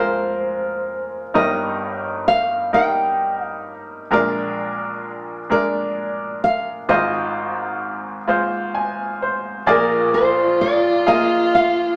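A slow 6/8 pulse at 43 beats per minute, counted in dotted quarters with a straight feel, carries this tender, nostalgic acoustic folk-pop ballad, heard as a short cut from a longer piece. Up front, a full-bodied nylon-string guitar carries the melody with a deep classical tone, fingerpicked between Bb4 and G5, with audible finger squeak adding intimacy. A bright upright piano accompanies across a broad span from F1 to Ab5, its brilliant, woody, natural sound decaying quickly. The harmony moves from Fm through Eb/G, Bb7 and Ab6 before returning to Bb7 as a new section opens at 9.7 seconds. At that point a single dark violin enters on an F4 second line, bowed sul tasto with vibrato, giving a veiled, intimate colour through to the end at 12.0 seconds. A moderate large-studio reverb adds gentle space.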